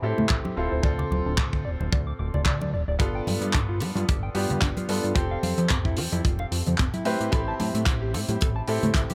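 This nu-disco excerpt opens at once with a bright baby grand piano, a mellow electric guitar riff and a fat analog bass, set in A minor at 111 BPM with swung sixteenths. The piano carries the accompaniment with a brilliant, intimate tone, audible action noise and long sustain, its chords pumping from sidechain compression and trailed by analog delay. The guitar sounds dark and clean, fingered through subtle chorus and a low-pass filter, while the bass is thick and saturated, blending detuned sawtooth and square waves with a fast, plucky filter attack. Congas and bongos slip in at 0.2 seconds, close and dry with hard hands yet sitting in the background, and the kick drum and a tight funk drum kit with handclaps and hi-hat arrive at 0.3 seconds, the kick up front, mid-forward and rolled-off on top. The chords move from Am7 through Dm7, G9 and Fmaj9 to Am9 within a small room ambience, giving the cut a cosmic, sleek mood.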